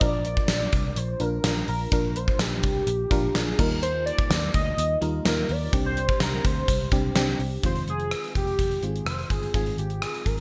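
A gated 80s drum kit sits up front in this moody, nostalgic 1980s-style pop excerpt at 126 BPM, its punchy kick, fat snare, rim click, tambourine and bright cymbals ringing in a gated stone room. A velvety sawtooth synth lead with chorus and vibrato carries the melody over a glassy, bell-like FM electric piano with its own chorus, while a dark, round, foam-muted picked bass anchors the low end. The harmony moves from Bb through Ebadd9 and Csus2 before shifting to Fm7 at 7.6 seconds and Ab6 at 9.5 seconds, all within a bright digital production with light studio reverb.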